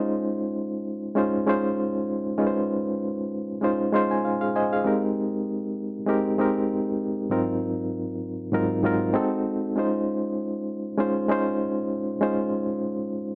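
A gently swung sixteenth-note feel at 98 BPM in 4/4 carries this lush soul passage, cut from a longer piece, played by a lone electric piano. The instrument sits up front in a dry, close 1970s-style studio sound with light reverb, its reedy, barky tone lightly overdriven and pulsing with fast tremolo through its built-in speakers as it spans Ab2 to C6. Over an opening Dbmaj9, a short fill at 3.6 seconds leads into Abmaj9 at 4.9 seconds, and the warm progression then moves through Ab13 and Ab7b9 before settling back on Dbmaj9 at 9.8 seconds.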